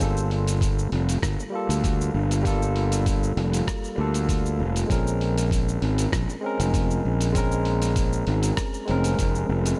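Relaxed and wistful, this sunset chillout clip moves at 98 BPM in 4/4 with a light swing on the sixteenths, shifting from Gm9 to Bbm9 at 4.9 seconds. A barky tine electric piano plays clean chords through a combo amp with tape echo, while a growly, overdriven fuzz bass sits up front beneath it. A dusty, tape-warm sampler-style kit of hi-hat, rim click and shaker plays alongside a gritty, thumpy electronic kick, both compressed and re-recorded in a small room, all set in light digital ambience.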